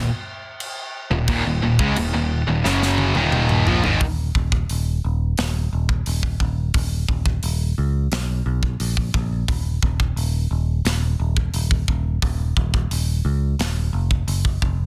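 A straight 4/4 pulse at 88 BPM drives this epic, aggressive heavy metal passage in Eb minor, cut from a longer piece, where three picked guitars riff on an Ebm chord: an up-front high-gain guitar with a bright edge, an overdriven electric sitting in the background, and a very quiet, double-tracked hollow-body guitar with a warmer tone. A growly, direct picked bass plays up front throughout, and a polished studio drum kit with a tight kick, medium-tuned snare, hi-hat, toms and crash enters at 0.6 s and plays a fill from 2.6 s. At 4.0 s the guitars stop, leaving bass and airy drums to carry a chordless stretch in a dry, dense, heavily limited modern master.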